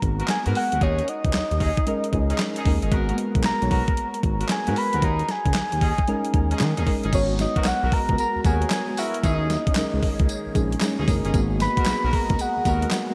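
New jack swing R&B at 114 BPM in G# minor, confident and bouncy, with a swung sixteenth-note feel in this short excerpt cut from a longer piece. A clean 12-bit drum machine sits up front, its thumpy kick, medium-tuned snare, handclaps, hi-hat, tambourine and crash given overdrive and gated reverb, while a smooth, gliding synth bass with portamento holds the low end. Soft, round electric-piano-like synth keys with chorus supply the accompaniment, and a warm horn section with light vibrato adds tight, jazz-style stabs through digital delay. On top, a full, octave-layered synth lead carries the melody with chorus, vibrato and delay, joined from 7.1 seconds by a swirling phased analog pad that holds sustained chords in the background. The harmony rocks between G#m9 and D#7sus4, and the bright 1980s-style digital production is bathed in a lush hall reverb.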